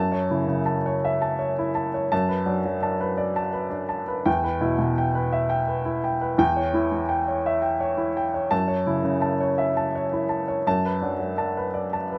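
A woody, up-front upright piano with long, natural sustain rings in a moderate stone-room reverb, giving this brief fragment of a longer neoclassical minimalist piece an intimate, melancholic air. The solo piano moves in a rubato 6/8 lilt across a range from low bass to bright upper notes for the full 12.2 seconds, circling through F#m7, Bm7/F#, Em and C#dim/E before returning to F#m7 and Bm7/F#.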